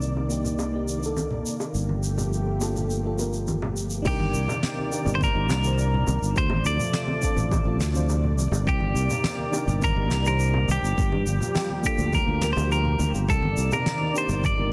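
A bright, twangy clean electric guitar carries the melody from 4.1 seconds with tape echo, joined at the same moment by a deep electronic kick, over a growly fretless bass, a thick, warbling detuned pad with chorus, a round FM electric piano with chorus, phaser and delay, soft brush drums with dark cymbals and a fat snare, and background bongos and congas, in this smooth sunset chillout excerpt at 104 BPM in C dorian, moving through Cm9, Gm9 and Dm7 in a lush hall.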